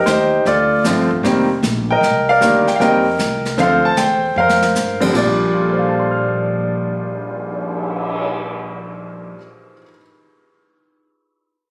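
A clear, up-front grand piano carries the melody over a woody pizzicato upright bass from the start of this relaxed jazz piano trio fragment in Bb major, swinging at 154 BPM in 4/4, with plate reverb lending the piano a natural sheen. Airy brushed drums with dark cymbals, a boomy kick and a medium-tuned snare join at 0.1 seconds as the harmony moves through Dm7, F9sus4 and Cm9, and they add a short fill at 4.4 seconds before the chords settle on Bb6. Captured on a phone in a moderate studio room, the piece is cut from a longer performance, with the drums stopping at 8.2 seconds while the piano continues to the end.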